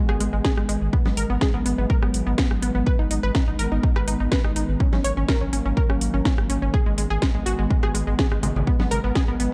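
Progressive house at 124 BPM in G# minor, this emotional, expansive excerpt moves through G#m, Eadd9/G# and F#6/G# chords over a straight 4/4 pulse. A lush, detuned unison pluck spins bright arpeggios from the very start, its sawtooth bite trailing dub echoes and breathing with sidechain pumping. Beneath it, an airy, breathy pad holds soft, warbling sustained chords with chorus, while a filter sweep runs across the analog synth pad throughout. A deep, saturated sub bass anchors the low end, and a punchy, up-front electronic kick enters at 0.4 s, joining a house kit of cracking snare, rim click and metallic hats that is already playing. Bright, band-limited congas appear in brief touches, at 1.1 s and again near 4.9 s and 8.4 s, all set in a dark production with light reverb.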